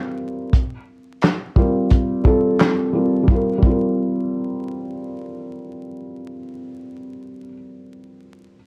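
Lo-fi hip hop at 87 BPM in G minor with a 16th-note swing and a nostalgic, hazy mood, this short cut from a longer piece features a felt-muted upright piano, soft and mellow, playing Gm7 and Fsus4 chords through cassette tape and a low-pass filter from 0.0 to 8.6 seconds, while a smooth soul drum kit with handclaps, hi-hat, a punchy kick and a medium-tuned snare adds 12-bit sampler grit from 0.5 to 3.8 seconds, all set in moderate studio reverb with worn, warbling tape, vinyl crackle and drifting pitch.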